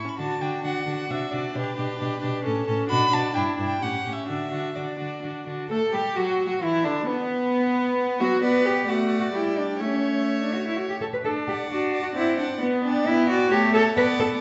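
A dark cello, placed up front, carries the bass of this lively, cheerful classical-period movement for string quartet, a short cut from a longer piece in D major at 132 BPM in 3/4 with a rubato feel. Also placed up front, a warm, smooth-topped viola bows the accompaniment, while the first violin sings the melody with light vibrato, climbing as high as C#6. A rich-toned second violin plays a supporting line beneath the melody, and all four players use gut strings in a reedy period style. The opening section moves through D, G/B, A, Bm and A7 back to D. At 5.7 s a second section turns to F#m and Dsus2, passes a brief unharmonized moment, then returns through Bm and A to D, D7/C and G/B before settling on Bm. A recital-hall reverb of 1.5 s surrounds the quartet, and the sound of the church or concert hall has a soft, rounded top end.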